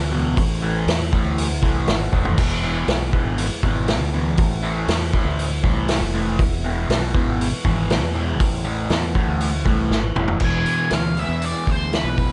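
A straight 4/4 pulse at 120 BPM drives this dark, hypnotic psychedelic rock excerpt, with a vintage acoustic drum kit placed up front, its gritty, saturated sound marked by dark cymbals, a tight kick and a medium-tuned snare, entering at 0.4 seconds and playing fills at 2.1 and just before 10.4 seconds. A growling fingered electric bass with overdrive sits low underneath, while a double-tracked fuzz guitar plays a riff treated with distortion and phaser over a chord pattern that alternates between Am and E. In the background, a softly plucked tanpura drone adds a buzzing, shimmering layer, and a very quiet, flute-like tonewheel organ holds sustained chords through a slow rotary speaker, its key click audible. At 10.4 seconds an octave-fuzz lead guitar takes up the melody, distorted and run through wah and slapback echo. The sound is dry, with a rolled-off top end that keeps the whole mix murky.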